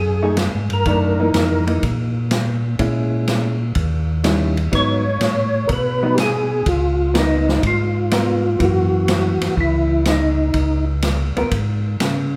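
This excerpt from a longer soul jazz organ trio piece opens with a tonewheel organ carrying the bass line and a percussive tonewheel organ stating the melody, both up front and turning through a slow rotary speaker with chorus vibrato. The melody voice is mellow, round and dark, with third harmonic percussion, while the bass organ sounds clear and clean, its key click audible. Moments later a compressed, shadowy hollow-body electric guitar enters with picked accompaniment, followed by a swinging big-band drum kit of hi-hat, kick, ride and snare, with a punchy kick and a medium-tuned snare in a natural acoustic sound. The melody drops out at 1.6 seconds and returns at 4.8 seconds, over chords moving from a rootless B13 and F#6 through A#m7b5, D#7b9, G#m7 and C#13 back to F#6. The mood is bluesy with a swinging 4/4 feel, and a moderate recital hall reverb gives the trio a spacious, church-like air.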